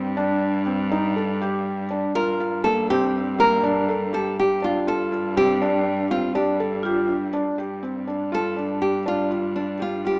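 Straight eighths pulse at 243 BPM in an uneven 11/8 through this hypnotic, pensive piece of contemporary chamber music in G minor: a dark, intimate felt-muted upright piano plays arpeggios with audible action noise over a bowed cello holding a focused G2 with vibrato, a fingerpicked nylon-string guitar enters up front with the melody at 2.2 s, finger squeak and all, and a vibraphone with medium mallets adds a brief metallic, ringing second line at 6.8 s, set in a moderate concert hall reverb with a small speaker sound.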